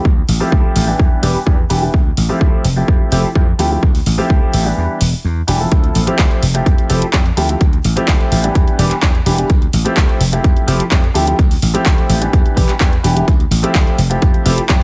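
A punchy, overdriven electronic kick and a bright, amped slap bass with tube saturation, sidechain pumping and a low-pass filter open this sensual, groovy filtered disco house excerpt at 127 BPM in D dorian, soon joined by an overdriven house kit of handclaps and pumping hi-hats and by an intimate concert grand piano, its audible action noise and long sustain colored by phaser, 12-bit sampler grit and filtering, cycling through Dm11, Em7 and Fmaj9 in a dry mix with a brief break at 4.8 seconds.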